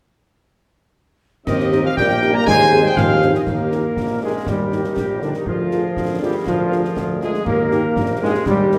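A festive, rousing military-style march for wind band in 2/4 at 120 BPM in Eb major, cut from a longer piece, where a clear trumpet section carries the melody over up-front trombone chords with light vibrato, a clear, roomy tuba bass, a distant woodwind line in the background, a very quiet dark French horn accompaniment entering at 1.7 seconds, and concert snare, bass drum and dark clash cymbals, while a pure, soft flute ensemble and a punchy euphonium add second lines only until 3.5 seconds, all set in a wet scoring-stage reverb.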